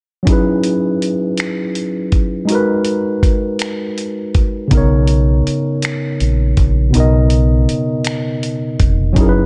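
A dark, softly reverberant production frames this short cut from a slow six-eight R&B piece in B major, moving at 54 BPM with an intimate, warm mood. A worn, slightly out-of-tune tine electric piano with light overdrive sits up front from the start, carrying chords from F#13sus4 through G#m9 to Bmaj9, while a gritty, compressed sampler-style soul kit of finger snaps, hi-hat and a thumpy kick keeps time close beside it. At 4.7 seconds a deep, round fingered electric bass enters and becomes the most prominent part.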